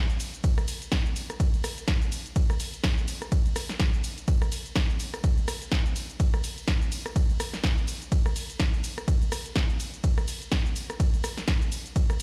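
House groove with a bittersweet, soulful mood and a swung sixteenth feel, built from an up-front, tape-warm electronic kick, a punchy analog drum machine of hi-hat, ride cymbal, rim click, shaker and snare re-recorded in a small room, and a very quiet, close and dry tambourine with egg shaker and group handclap, all set in a stone-room reverb as if played on a big sound system in a bare space.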